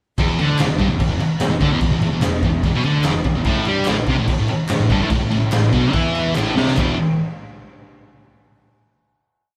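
The recording has the feel of a band playing live together in one room, with a moderate studio reverb around it and a gritty, raw mood throughout. This short garage rock piece in E minor drives along at 145 BPM in a straight 4/4, built on a thick, fuzz-distorted electric guitar riff, double-tracked and up front, that shifts to an A5 at 3.5 seconds. An overdriven, picked fuzz bass sits very quiet beneath it, doubling the riff with a punchy quarter-note figure. The acoustic drum kit, saturated with a rolled-off top, lays down a big rock groove of punchy kick, medium-tuned snare and crash cymbal, closing with a fill just before the end. Crisp group handclaps join in the background from 0.6 seconds. The band lands on a final E5 chord at 6.8 seconds, which rings until 8.4 seconds.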